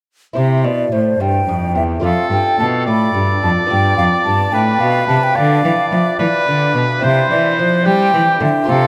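A delicate fingerpicked lute with double strings opens this radiant, dance-like excerpt of a baroque-style sonata movement in C major at 72 BPM in 12/8, joined almost at once by a hollow, mellow concert flute carrying the melody and a bowed, gut-string cello giving a rich bass, with a clear oboe stepping up front at 2.0 s as a second line, all over a C, Dm/F, G7 and back to C progression and bathed in a vast cathedral reverb.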